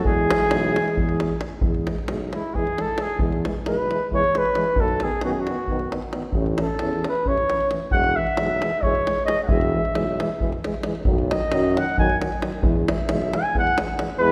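A mellow flugelhorn leads this excerpt of Balkan brass band music, sitting up front yet roomy and distant as it plays a virtuosic, wild solo from 1.6 seconds over a fast 7/8 pulse at 267 BPM in E major, moving through E, B and A. Beneath it, two euphoniums hold the accompaniment in the background, one soft-edged with vibrato and the other smooth on top. A tuba gives a warm bass, and a deep, close, dry davul drives the rhythm. A dark, very quiet alto saxophone adds a brief second line at the opening, with the whole band set in a wet concert hall reverb.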